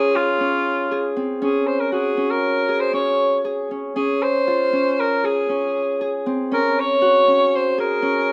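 Contemporary instrumental chamber music in an uneven 5/4 at 118 BPM, this hopeful, playful excerpt in Db major sets a clear, punchy soprano saxophone melody in classical style, with light vibrato, over warm, ringing fingerpicked Celtic harp arpeggios, both up front in a moderate recital hall reverb, as the harmony alternates between Dbmaj7 and Ab9sus4.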